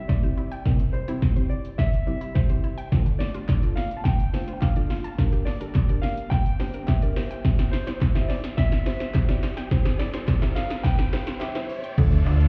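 The punchy analog drum machine sits up front throughout this energetic, bittersweet dance-pop build-up, its kick, snare, hi-hat, shaker and crash cymbal carrying a tape-warm snap as a drum fill runs across the first 12 seconds. Over it, a dark, mellow baby grand piano carries the melody through a tape echo, while a deep, nasal chord stab with chorus and sidechain pumping fills in the harmony and a bright, lush unison pluck spins arpeggios in the background. A crisp, very quiet group handclap with a live-room feel joins at 3.5 seconds, and a faint electronic riser creeps in at 5.2 seconds as the chords move from C through Dm and Bb6 back to C. At 12.0 seconds the build breaks onto Dm, where huge, full-bodied supersaw chords arrive and a snappy, metallic FM bass punches in up front, joined briefly by a soft, round pluck in the background. The whole mix sounds muffled, as if heard through a wall, with a club reverb around it, and it is cut from a longer piece.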